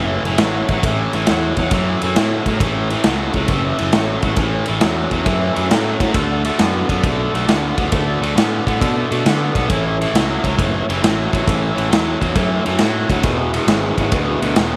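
A swung 4/4 groove at 135 BPM drives this swaggering, raunchy blues rock and southern rock excerpt in A major, moving from A to D at 6.1 seconds, back to A and then to E at 13.2 seconds. Up front, a bright, double-tracked overdriven electric guitar plays a low riff over a big acoustic drum kit with a tight kick, medium-tuned snare and ride cymbal in a stone room, while a round, fuzzed picked bass holds the bottom. Sitting in the background, a fat, percussive tonewheel organ with third harmonic percussion, vibrato and a slow rotary speaker sustains chords, all in moderate spring reverb and small room ambience.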